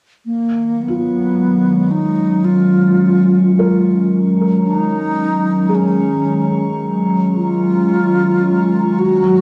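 A warbly, detuned tape-like pad and a hollow, airy alto flute open this serene ambient excerpt together at 0.3 seconds, the pad holding a dark, nostalgic Ebm11 chord up front while the flute carries the melody with vibrato through plate reverb and analog delay. A glassy, drifting harmonics texture fades in quietly in the background from 0.7 seconds, and a soft, felt-muted upright piano adds mellow, intimate arpeggios from 0.9 seconds. The spacious sound sits in a wet small room with a lo-fi cassette character.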